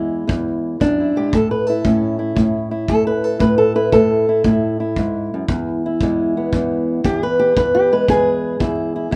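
A fingerpicked old ladder-braced acoustic guitar opens this gritty, laid-back slice of acoustic country blues, its dark, woody, boxy tone and old strings sitting up front with a slapback echo as it carries the melody over a swung E to A to E progression. From 0.3 seconds a tight kick drum with brushes joins, sounding distant and roomy with a rolled-off top, while the dry sound of the recording keeps the duo intimate.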